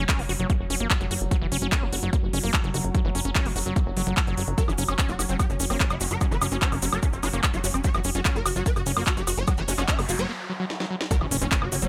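A squelchy, overdriven acid bass riff stands out in this intense, driving psychedelic trance excerpt at 147 BPM in F# major, its resonant sawtooth tone distorted, pumping against the kick and trailed by dub echo as a filter sweep runs across it. Beneath it, a punchy, wave-folded analog bass gives a funky, plucky low end with tube saturation, while a heavy electronic kick, re-recorded in a large room, and a tape-warm techno kit of cracking snare, smooth hi-hats, handclaps and woodblock sit up front. In the background, a bubbling texture of detuned sawtooth chords steps through random filter changes, carrying chorus, its own reverb and vintage 12-bit sampler grit. At 4.6 seconds a swarming, aggressive rave lead enters, a bright detuned unison with pulse-width modulation, portamento and a pitch-rise attack, treated with chorus, phaser and dub echo, joined by a grainy, close cabasa. A noise sweep begins at 9.8 seconds, leading into a short break and drum fill before an impact lands at 11.1 seconds, all set in light reverb.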